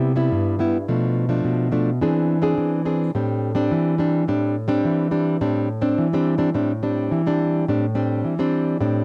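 A dark, fingerpicked nylon-string guitar plays alone and up front through this short samba excerpt, its classical touch giving a yearning, bittersweet mood at a moderate, straight pulse. The harmony moves from Cmaj7 through Bm7b5 and Eaug7 to settle on Am7, and a new section begins at 7.7 seconds before the cut at 9.0 seconds. The intimate booth ambience and cassette home recording lend the sound a close, lived-in character.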